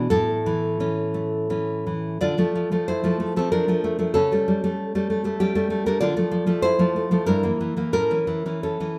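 Intimate and passionate, this brief fragment of a longer romantic piece is played on solo classical guitar in triple metre with a flexible, rubato feel. The nylon-string guitar sits up front, its fingerpicked tone full-bodied and deep, ranging from G2 up to D5. A stone room lends a reverberant glow that hangs around the notes for about 1.4 seconds, giving the performance the sense of a live player in a single resonant space. The opening phrase rests on an A chord before the music settles into a second section at 2.2 seconds, moving through D minor and A7 over C sharp. It returns to D minor, then passes through a diminished chord over G before arriving back on A at 7.9 seconds, leaving the phrase suspended as the fragment ends.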